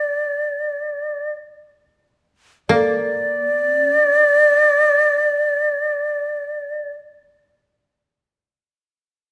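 Austere and calm, this short passage of Japanese chamber music unfolds in free time, cut from a longer piece. A breathy, end-blown bamboo shakuhachi carries the melody around D5, its soft attack and vibrato placed up front. Beneath it, a koto played with fingerpicks supplies a mellow, woody second line around D4, sitting a little lower in level. The pace slows over the opening 2.7 seconds before the music moves into a new section. Both instruments play together from the start until 6.9 seconds, framed by a moderate recital hall reverb.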